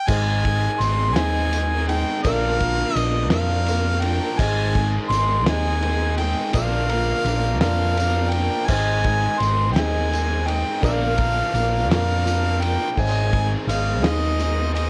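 A clear harmonica opens at 0.0 seconds and carries the melody up front with light vibrato and a slapback echo, leading a dusty, reflective passage of folk rock and heartland rock in a slow 6/8 at 56 BPM, swaying between Ab and Bb. Beneath it a round, dark picked electric bass with tube saturation sits prominently, joined by a cloth-damped, thuddy drum kit with a fat snare and dark cymbals and a gritty, rolled-off sound, plus a biting, double-tracked overdriven guitar riff. Further back, a boxy ladder-braced acoustic guitar with finger squeak, a warm baby grand piano and a jingly vintage tambourine fill out the sound, all wrapped in the warble and pitch drift of worn cassette tape.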